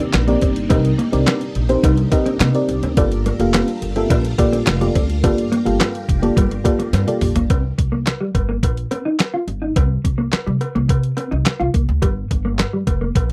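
Funky and danceable, this early-eighties boogie funk moves at 106 BPM in C minor, built on a thumpy, tape-warm 8-bit drum machine with handclaps, hi-hat, snare and toms, a woody pizzicato upright bass up front, a small-room cowbell and a dark, clean guitar riff that runs through the whole fragment. For the opening 7.5 seconds a dreamy, warbling FM electric piano with a chorus sits over a lush, sawtooth string machine in the background, moving from Cm9 to Gm9. A drum fill at 6.9 seconds leads into a sparer passage on C7(no3) and Gm7, where the guitar, bass, drums and cowbell carry on together in a dry, close studio sound.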